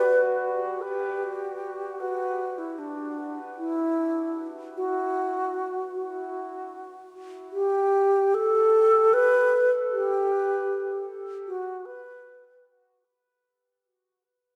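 A bright, airy alto flute carries the melody in this reflective ambient piece, sitting up front with a soft attack, vibrato and lifted highs, its line moving between D4 and B4. An analog delay trails the flute, and a wet echo chamber with a long 2.6-second decay gives the whole passage a spacious, echo-heavy feel. For only the first 0.8 seconds, a very quiet vibraphone played with soft mallets rings out arpeggios on D5, its metallic, mellow, vintage, band-limited tone shaded by a slow motor vibrato. The music moves at an unhurried 76 BPM in 4/4 with a straight feel, set in B minor. Cut from a longer piece, it fades in on the flute and fades out from 8.8 seconds to the close at 13.1 seconds.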